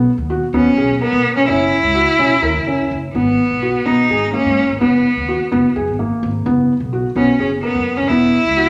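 In a restless, playful 7/8, this short chamber-music excerpt has a felt-muted upright piano rolling out soft, intimate arpeggios and a pizzicato upright bass giving woody, thumpy low notes on gut strings, while a single close, bowed cello enters at 0.6 s with a clear, focused vibrato melody, all set in a wet recital-hall reverb over chords moving from Bmaj9 to G#m7.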